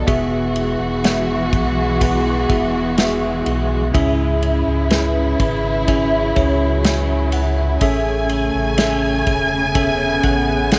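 Pop ballad at 62 BPM in E major, heartfelt and emotional, moving through Eadd9, C#m and Amaj7 in a short cut from a longer piece. A bright, bell-like tine electric piano with analog chorus sits up front alongside a lush, expressive bowed string section full of vibrato and portamento, while a deep, full sub bass with octave holds the low end. An acoustic drum kit played with bundle sticks enters at 0.1 seconds with punchy kick, medium-tuned snare and ride cymbal, all set in a moderate spring reverb.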